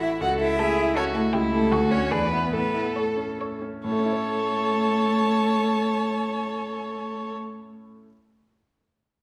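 Urgent and dramatic, this quick classical-period piano quintet movement in 3/4 and A major, at 131-161 BPM, eases its pace between 0.8 and 3.9 seconds, as an expressive violin sings the melody with vibrato and portamento over a second violin and a focused cello carrying vibrato-laden second lines, a close, full-bodied viola, and a clear concert grand piano with deep bass that rings on alone after the strings stop at 7.3 seconds, all set in a recital hall's reverb.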